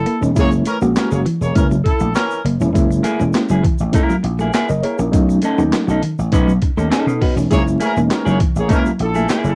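A strutting, gritty 101 BPM funk groove in F# mixolydian, cut from a longer piece, opens on a break where a compressed, thumpy sampler-style breakbeat kit with handclaps and a punchy, amped vintage slap bass sit up front, joined by a twangy picked clean guitar riff in the background, a reedy electric piano playing stabs with fast tremolo, a grainy egg shaker and a distant, roomy horn section with light vibrato that drops out after 2.4 seconds and returns at 7.5, while a dark, fingered semi-hollow guitar with subtle chorus enters at 3.0 seconds over chords moving from F#9 to B9 and back, all in a small room with a home-cassette feel and vinyl crackle.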